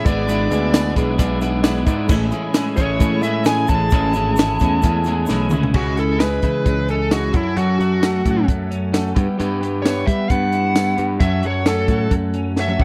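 A straight 4/4 pulse at 132 BPM drives this upbeat, carefree indie rock clip in A major, cut from a longer piece and recorded close and dry in a 1970s studio style with little reverb. A compact cocktail drum kit sits up front with a punchy kick, high-tuned snare, dark cymbals, hi-hat, toms and tambourine, while a grainy egg shaker ticks in the background until 5.6 seconds. A bright, direct picked electric bass anchors the low end, joined by a clean, fingered twangy electric guitar riff and a bright twelve-string electric guitar whose compressed riff is thickened by ensemble chorus and slapback echo. Over the top, a dark, distorted bluesy lead guitar with slapback echo carries the melody, moving from E7/G# to Amaj7 before a drum fill at 5.3 seconds launches its solo at 5.7 seconds. That solo rides a shift through C#m, F#m and Em/G back to F#m, and another drum fill arrives near the cut at 12.6 seconds.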